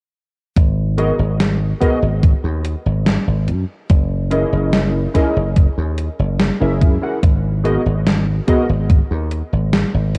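Vaporwave with a nostalgic, melancholic mood, this brief cut from a longer piece sets a punchy, foam-muted thumbed slap bass and a thumpy electronic kick under a gated 80s digital drum machine's hi-hat and snare, while warbling, detuned lo-fi synth keys with 12-bit sampler grit, subtle chorus and analog delay drift over G#m9 and F#13 chords in a digital ambience with cassette tape character.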